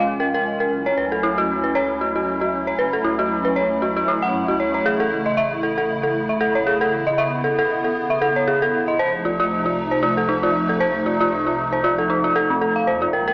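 Cerebral and eerie, this short IDM fragment, cut from a longer piece, moves with a gentle swing in 4/4. Up front, a dark, detuned FM synth bell spins arpeggios with inharmonic, quickly decaying tones, shimmering through chorus, tremolo and digital delay. Beside it, a hollow, flute-like pad holds mellow sustained chords that bloom on a slow attack, its vintage detuned tone thickened by ensemble chorus and a moving notch. Far in the background, a round sine sub bass supplies a deep, tube-saturated foundation. The harmony drifts from Bbm7 through Gbm7 and A to F7, and all three parts sound together for the full 13.3 seconds. A lush plate reverb and a worn cassette character with warbly pitch drift and small-speaker colour give the whole a faded, unsteady haze.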